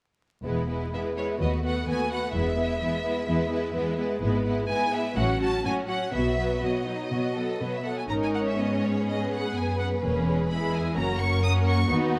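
The recording sits in a moderate recital hall reverb with vinyl crackle beneath it, in this short cut from a longer piece. It is a quick, graceful and cheerful classical-period movement for string orchestra in E major at 127 BPM, in a straight 4/4. From 0.5 s, a soft-attacked, expressive second violin section with a smooth top carries the second line. A clear, focused viola section fills in the accompaniment, while a close, even cello section and a distant double bass section share the bass. At 0.9 s, a lush, focused first violin section enters with the melody, high above, bowed with vibrato. The harmony moves from E through B7/D#, F#m/A and B to G#m and C#m7/E before settling on F#.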